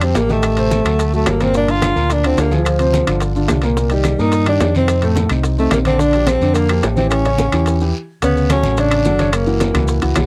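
A breathy, intimate tenor saxophone opens this Afro-Cuban jazz excerpt at once, carrying the melody up front over a grand piano, a dark, round fingered electric bass, and a bed of claves, congas, maracas and timbales, with bongos and guiro joining within the first fraction of a second. The feel is danceable and sophisticated at a brisk 216 BPM in straight 4/4, and the saxophone's mellow, whispered tone, soft attack and gentle vibrato give the lead a close-miked jazz character. The piano accompanies with a warm, natural sound as the harmony moves through minor seventh and half-diminished chords toward Bb6 and A7, while the amped bass sits forward in the mix. Among the percussion, the ringing metal-shell timbales sit close and dry and stand out from the rest, with woody claves, tight high-tuned bongos, bright low-tuned congas, raspy guiro and grainy maracas tucked into the background. A stop lands at 7.9 seconds before the music shifts into a new section at 8.2 seconds on Dmaj7, then F#7, in a dry, close 1970s-style studio sound with light reverb.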